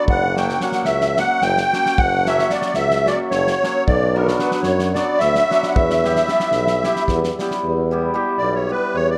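A reedy, dark musette accordion carries the restless, virtuosic melody of this Balkan wedding-band piece in 7/8, up front over a ringing hammered dulcimer accompaniment and a tuba bass with a soft attack and light vibrato. A small-room acoustic drum kit with a fat snare, tight kick and rolled-off top drives the straight feel through chords of F#, Bm and Em until 7.6 seconds, when it stops and the shimmering accordion takes a brief solo. The whole excerpt sits in a moderate concert-hall reverb and is cut from a longer piece.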